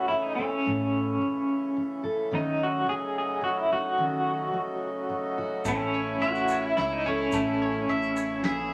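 A straight 3/4 at 108 BPM carries this hopeful, short acoustic folk passage, where a slightly broken-up, lo-fi electric guitar with tremolo sings the up-front melody over a dark, full-bodied fingerpicked steel-string guitar and the reedy, breathing chords of a hand-pumped harmonium. Around 5.6 seconds the band fills in: a woody fiddle with light vibrato adds a second line, a soft brush kit with a tight kick and rolled-off top sets the pulse alongside a grainy egg shaker, a bowl-back mandolin ripples double-string arpeggios, and a fingered electric bass settles low. A wet small-room reverb gives the whole group a close, intimate feel.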